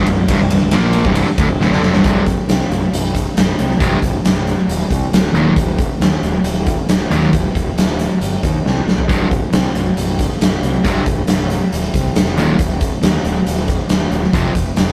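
An up-front, huge arena drum kit with bright cymbals and a punchy kick drives this aggressive, menacing hard rock excerpt in C minor at 137 BPM, with fills at 1.6 and 8.7 seconds, as a bright, cranked stack guitar and a dark, sludgy guitar in the background grind out overdriven, picked riffs over C5, Eb5 and F5 power chords, a growly fuzz bass underneath, all captured in a rough rehearsal-room recording with light reverb and tube saturation.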